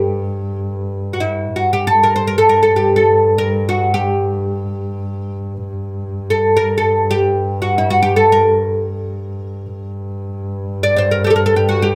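Both players sit up front in a small room with moderate reverb in this short 11.9-second cut from a longer Persian modal piece. In free time and set in G avaz esfahan, tuned to A4 = 442 Hz, the music carries a longing, melancholic mood. A plectrum-plucked fretless oud carries the melody from E4-50c to D5, its bright, woody, deep double strings treated with a plate reverb. Beneath it, a single bowed double bass holds a drone on G2, close and intimate, played sul tasto with a soft attack, light vibrato and a dark, smooth top. Both parts sound together for the whole 11.9 seconds, the bass sitting quieter under the oud.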